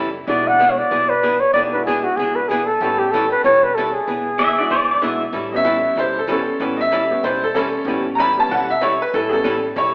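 An AM-radio sound colours this live, one-room performance, with a stone-room reverb giving it a hard, echoing halo. It is a swinging, down-home slice of western swing cut from a longer piece, moving briskly at 190 BPM in 4/4 with a lazy swing on the eighths, centred on A mixolydian and tuned a little under standard pitch. A dark, hollow-body archtop guitar picks clean, compressed chords over a thumpy, woody upright bass played pizzicato, while an up-front upright piano, brilliant, worn and slightly detuned, fills in around them. A mellow flugelhorn carries the jazz-style melody with a soft attack, light vibrato and scooped notes, and just before it bows out a clean electric pedal steel slips in briefly with fingerpicked slide phrases and volume swells. From 5.3 seconds the piano takes over as the featured voice for a solo that runs to the end at 9.9 seconds.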